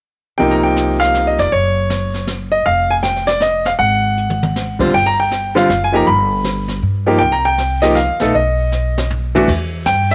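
A clear, up-front grand piano carries the melody from 0.4 seconds in this late-night, swinging jazz piano trio waltz in 3/4, alongside a woody pizzicato upright bass and a brushed drum kit with dark cymbals, a high-tuned snare and a boomy kick, which plays fills at 4.2 and 8.7 seconds over minor-leaning chords in a small-room ambience, in a short piece cut from a longer recording.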